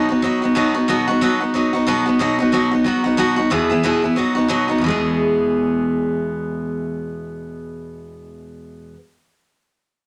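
Rowdy and rollicking, this brief excerpt from a longer rock piece features a bright, full-bodied jumbo steel-string acoustic guitar played solo and up front, picked at a brisk 183 BPM with a swung eighth-note feel in E major, moving from B to E chords across two short sections in a moderate studio reverb.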